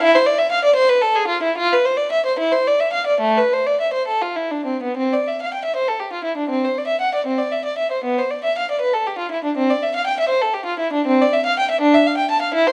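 Solemn and introspective, this short cut from a baroque-style suite movement for unaccompanied violin sways freely in 6/8 at 62-83 BPM, a single bowed violin with a reedy, gut-string tone played close and up front from A3 to A5, moving from A minor into C major at 5.0 seconds within a moderate recital hall reverb and a dark, warm production.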